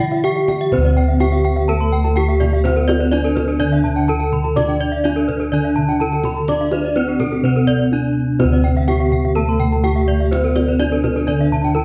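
Shimmering and brilliant, this Balinese gamelan excerpt moves at 125 BPM in a straight 4/4 in D slendro. A bright, horn-mallet bronze metallophone carries the melody up front beside mellow, dark bossed gongs on the bass. A soft metallophone struck with padded disc mallets provides accompaniment in the background, while two paired-tuned metallophones play arpeggios, one close-miked, dry and full, the other airy, and a tight, compressed, saturated kendang sits in the background. A moderate recital-hall reverb and worn, warbly cassette pitch drift colour the whole recording.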